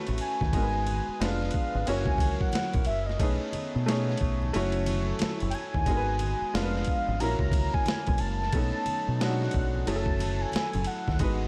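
A velvety synth lead with vibrato, chorus and slapback echo carries the melody through this introspective, soulful neo-soul R&B passage, cut from a longer piece and swung on the sixteenths. Underneath, an intimate, woody upright piano with audible action noise moves through jazzy chords such as A69, G#m7, Fdim7 and B13, while a round, punchy fingered electric bass joins a gritty, tape-warm boom bap kit with a thumpy kick that sits up front. A hollow, flute-like pad with chorus lingers in the background, and very quiet, bright congas played with soft hands add color, all in a dry, close sound.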